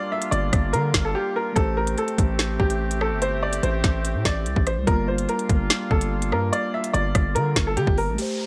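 An up-front, digitally ambient mix opens this ominous, menacing drill excerpt at 145 BPM in a half-time feel, where a bright, woody upright piano carries the melody with delay over a mellow tine electric piano, sustained chords from a woodwind section with light vibrato, and harmony moving from Gm7 to Am7 and back. From 0.2 seconds a drill kit hits hard with a clipped kick, woody snare, rim clicks and crisp hats, joined at 0.3 seconds by a heavy, saturated 808-style bass with a noisy, aggressive edge. A break lands between 1.1 and 1.6 seconds, and a downlifter closes the passage at 8.2 seconds.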